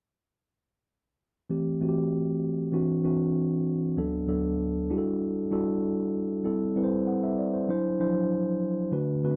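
A straight 4/4 pulse at 97 BPM carries this short soul passage in A dorian, which is cut from a longer piece. Its mood is bittersweet and silky. A mellow tine electric piano provides the accompaniment from 1.5 to 9.4 s, sitting up front with a clean tone heard through its built-in speakers and spanning D2 to F#5. The chords move from Am7 to D9, then through Bm7/D and Em11 before returning to Am7 and D9. A moderate plate reverb with a 2.6-second tail surrounds the recording, and the overall production is dark and warm.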